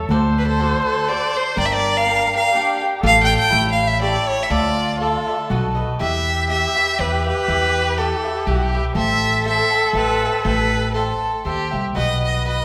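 Bathed in the reverb of a church-like hall, this dramatic, passionate fragment of Mexican folk mariachi in 3/4 places a rich, smooth bowed violin with vibrato up front on the melody from 0.4 seconds, joined by a dark, boxy erhu gliding with portamento through a second line, over crisp picked cavaquinho accompaniment and a woody pizzicato upright bass, also up front, as a new section begins at 6.0 seconds.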